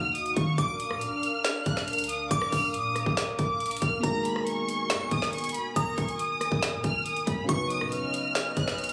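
Hip hop in a trap style, this dark, eerie passage moves with a half-time feel and is cut from a longer piece. A lush, bowed violin section carries the melody up front, its expressive vibrato giving the ensemble a distant, studio sheen, while a smooth, detuned sawtooth pad with chorus sustains chords beneath it. A clean, boomy 808-style bass supplies deep sine tones, and an electronic trap kit sits up front with a hard-clipped kick, woody snare, metallic hi-hats and rim clicks. From 0.6 seconds a glassy, crystalline FM bell adds a bright second line treated with chorus and delay, and at 4.0 seconds a mellow, vintage grand piano joins with long-sustaining accompaniment. The harmony shifts through Ebmadd9, Bb, Abmadd9 and Badd9, and the whole take sounds captured on a phone in the room, with club reverb and compression.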